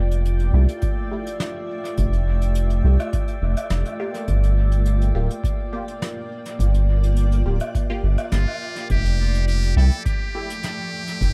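A spacious, meditative ambient dub passage, cut from a longer piece, opens on a blurred, granular cloud pad holding Fmaj9 and Gm7 chords over a round, up-front analog bass and a faint, glassy harmonics texture with drifting overtones, as airy jazz brushes on hi-hat, high-tuned snare and woodblock arrive with dub echo, muted, filtered chord stabs pass through phaser, ensemble chorus and echo, a deep, tape-warm electronic kick enters at 0.8 seconds, and a buzzy, metal-muted trumpet takes a brief solo melody from 8.3 seconds, all set in an echo-heavy small room.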